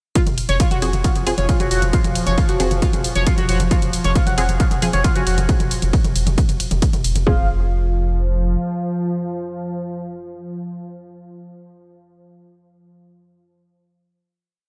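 Driving peak-time techno at 135 BPM in F phrygian, relentless from the first beat: a heavy, tape-warm kick sits up front with a four-on-the-floor pulse alongside a punchy analog drum machine of closed and half-open hats, ride and low toms, while a thick, saturated sub bass rumbles between the kicks under sidechain pumping. A gritty, screaming overdriven synth lead repeats an eight-step riff through phaser, tube saturation and analog delay, as muted, detuned dub chord stabs echo sparsely in the background and a deep, moody pad drones on F3 from 1.0 s. The drop runs until 7.3 s, when the drums and lead fall away and the pad and stabs settle on a final F minor chord that rings to 10.2 s in a light digital ambience.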